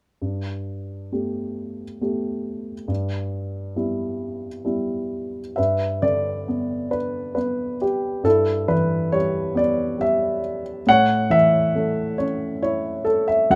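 In an unhurried 3/4 at 68 BPM with a flexible, rubato feel, this short cut from a longer classical piece sets a lyrical solo piano in G lydian, its mood peaceful and warm. A dark baby grand carries everything from 0.2 to 13.6 seconds, ranging from D2 up to F#5 with a mellow, intimate tone, short sustain and audible action noise, sitting up front in a small room with a moderate, natural ambience. The harmony opens on Gadd9 and Em/G, then moves through G and Em/G again in a second passage beginning at 5.6 seconds before landing on A.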